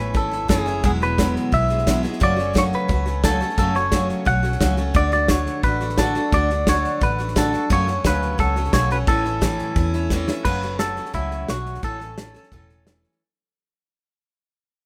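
Light reverb frames this short honky-tonk and classic country cut, with the drums set in a studio room and the guitars and drums placed up front for a close, down-home feel. At a brisk 175 BPM in straight 4/4 and A major, a clean, twangy electric guitar carries the melody, its bright picked tone compressed and sitting in the upper register. Beneath it, a picked steel-string acoustic guitar with fresh strings and an auditorium-sized sparkle fills in the accompaniment, while a vintage foam-muted fingered bass adds a dark, round, amped bottom end. The acoustic drum kit brings a fat snare, punchy kick, hi-hat and crash cymbal, and a drum fill at 10.1 seconds marks the turn into the closing passage. The chords move from A through Eadd9, F#m and D before circling back, and the recording begins fading at 10.4 seconds, leaving a nostalgic glow as it trails off by 13.2 seconds.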